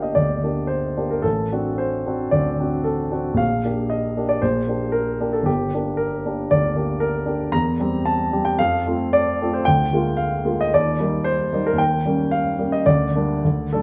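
A romantic classical character piece for solo piano in G minor, this stormy, brooding excerpt moves at 113 BPM in 4/4 with a flexible rubato feel and a tuning of A4 = 441 Hz. A baby grand piano, polished and up front, plays alone from 0.0 to 13.8 seconds, spanning G1 to Bb5 as its harmonies travel from Gm through D7/A, C7/E, F, Bb7/D, Ebmaj7 and Eb7 before settling on Gm/D. The piano sits in a wet recital hall with a 1.7-second reverb tail.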